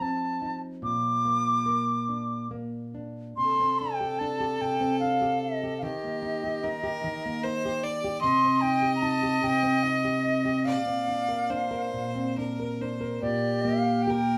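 In a free, rubato three-beat lilt, this Celtic slow air opens with a reedy wooden flute carrying the longing, haunting melody high and up front, its pure tone touched with vibrato and a crisp attack, over a deep, fingerpicked nylon-string guitar. At 3.4 seconds a single bowed fiddle joins with a biting, airy second line and light vibrato, adding intensity close to the listener. The trio sounds as if playing live together in a small studio room, and the piece is cut from a longer performance.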